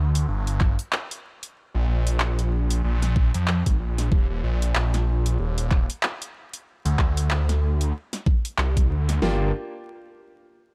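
A thick, swirling detuned saw bass with phaser and overdrive leads this swaggering, gritty glitch hop excerpt in G minor at 94 BPM, with a 16th-note swing, moving through G5, Bb5, Eb5 and Csus2 over a bed of vinyl crackle. Two overdriven dubstep drum kits fill out the groove, one up front with a knocking kick and huge snare, the other adding handclaps and bright hats from a small room. At 9.2 seconds a brilliant concert grand piano cuts in with brief stabs on Gm7, pumping and trailed by delay.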